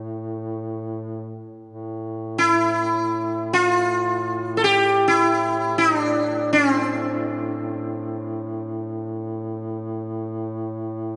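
In free time, this brief, mournful Caucasian lament in A minor opens with a mellow, distant duduk holding a low drone on A2, its vibrato and scooped notes giving it a longing, folk-style voice. At 2.4 s a plucked sitar enters up front with the melody, its buzzing tone and shimmering sympathetic strings ringing until 10.4 s, while the drone carries on beneath it to 11.2 s. The whole passage is bathed in a wet church reverb with a long, soft-topped decay, and it is cut from a longer piece.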